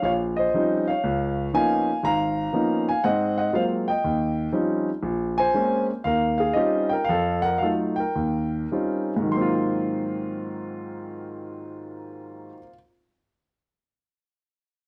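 Solo jazz piano with a playful, sophisticated air, swinging in 4/4 at 101-120 BPM in Ab mixolydian. The concert grand sounds intimate and up front, with deep bass, long sustain and audible action noise, spanning Ab1 to C6 over lush dominant harmony such as Eb13, Db13 and Ab13, and a turn through Bbm9 and F7b9. The tempo slows from 5.0 to 9.3 seconds in this short cut from a longer piece, and the piano sits in moderate studio reverb until it stops at 12.7 seconds.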